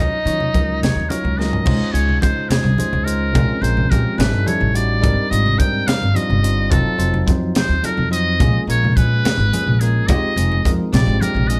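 Rolling in a straight 6/8 at 71 dotted-quarter beats per minute, this electric jazz fusion excerpt feels intense and driving. A trumpet with a metal mute carries the melody throughout, its buzzy, thin, vintage tone shaded by vibrato and scooped notes and set in slapback echo and plate reverb. A warm tenor saxophone adds a brief second line with a soft attack before dropping out at 1.3 seconds. A bell-like tine electric piano supplies clean, direct accompaniment, and a woody pizzicato upright bass, the most prominent part, anchors the low end. The crisp fusion drum kit is gritty and saturated, with a high-tuned snare, punchy kick, hi-hat, crash and toms in a pumping small room; it plays a fill at 1.4 seconds, while ringing congas sit in the background. The harmony moves through rich jazz chords from Ebm9 to Dbmaj9, Abmaj9#11 and F7b9 before arriving on Bb13, in a lightly reverberant space.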